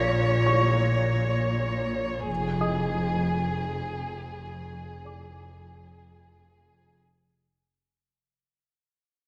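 Cinematic and tense, this ominous excerpt drifts in free time, cut from a longer piece and fading out across its full length. A violin section carries the melody up front with a focused, vibrato-rich bowed tone, while a double bass section and a lush cello section hold the low end beneath it. A felt-muted upright piano sits in the background, its thick-felt touch soft and intimate with a short sustain. A second, more expressive violin section adds a high, close texture for the opening 1.9 seconds before dropping away. The harmony moves from A#m to Fm at 2.3 seconds, and a scoring-stage reverb with a 1.7-second tail gives the ensemble a wet sound.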